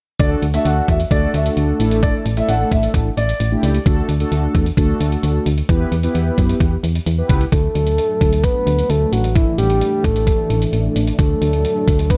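Light reverb surrounds this wistful yet bright synth-pop excerpt, where a detuned 8-bit drum machine with a thumpy, tape-tinged kick and hi-hat sits up front beside a punchy, round FM bass from the start. A mellow, brassy synth brass patch with chorus and vibrato carries the accompaniment until 7.4 seconds, while a concert grand piano with deep bass adds a brief second line through delay in the opening seconds. At 7.5 seconds a soft, octave-layered synth lead, detuned and treated with chorus and delay, takes the melody over sustained, warbling string-machine cellos with a slow attack and ensemble chorus.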